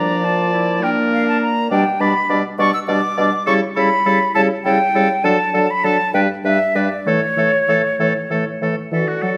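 A 6/8 metre at 67 dotted-quarter beats per minute, with slightly uneven beats, drives this quick, dramatic and urgent classical-period movement for wind quintet, heard as a short cut from a longer piece. An airy concert flute with vibrato and a soft attack carries the melody up front, while a bright oboe with light vibrato sings a present second line and a smooth-topped clarinet and mellow French horn fill in the accompaniment. A distant, roomy bassoon anchors the bass, and the whole ensemble sits in a wet recital hall reverb.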